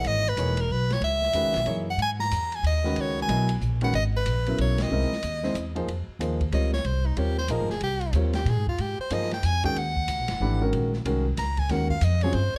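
A bright soprano saxophone with vibrato and plate reverb leads this spiritual, hypnotic modal jazz waltz at 185 BPM in swung 3/4, moving into a solo at 5.9 seconds after a band accent at 4.7, while a polished grand piano comps over C#m9, C7alt, Fm9 and Ebm9, a woody pizzicato upright bass sits up front, and a smooth acoustic drum kit with boomy kick and dark cymbals rounds out a close, detailed, lightly reverberant excerpt.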